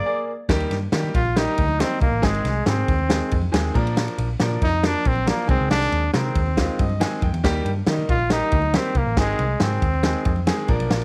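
Danceable and uplifting, this short cut from a longer uptempo 1960s-style soul piece moves at 138 BPM in a straight 4/4 in Eb major, with an up-front trumpet carrying the melody in a jazz style with light vibrato over a bright, brilliant grand piano that adds a fill from 6.6 to 7.4 seconds. After a brief break, a vintage drum kit with a fat snare, punchy kick and rolled-off top enters at 0.5 seconds alongside a dark, round, foam-muted picked electric bass and very quiet, damped congas with hard hands. The band sits in a small room ambience as the chords move through Eb, Ab, Bb and Ab/C.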